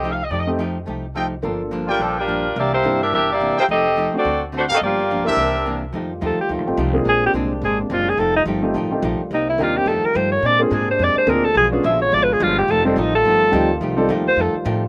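Big band swing at a brisk 213 BPM in 4/4, joyful and swinging, in F mixolydian and cut from a longer piece. For the first 5.8 seconds a tight, up-front saxophone section carries the melody with vintage vibrato, punctuated by smooth-topped trumpet stabs. Underneath, a woody, thumpy upright bass on gut strings plays pizzicato, a hollow-body archtop guitar adds dark, clean picked accompaniment with a slapback echo, and a grand piano with deep bass fills out the accompaniment. At 5.9 seconds the horns give way to a solo alto saxophone with a warm subtone, while a trombone section sustains mellow chords in the background. The harmony moves through rich ninth chords, passing a diminished chord before settling back on F9. The sound is dry, recorded outdoors with little reverb or room ambience.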